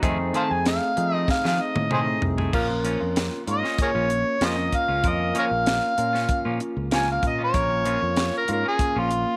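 A tight funk drum kit with a high-tuned snare and a dry, tight kick lays down a straight 96 BPM groove in 4/4 for this smoky, mournful soul blues excerpt in Bb minor, playing from the start together with a warm fingered electric bass, a barky tine electric piano through a combo amp with phaser, and bright, clean picked stabs from a semi-hollow guitar sitting in the background. An overdriven, gritty harmonica enters at 0.4 seconds and takes the lead up front with light vibrato, tongue slaps and scooped notes in a jazz style, soloing over an F7#9 chord while the drums play a fill from 1.3 seconds. At 2.5 seconds the harmony settles onto Bb minor, and the band sits in a small room with light reverb.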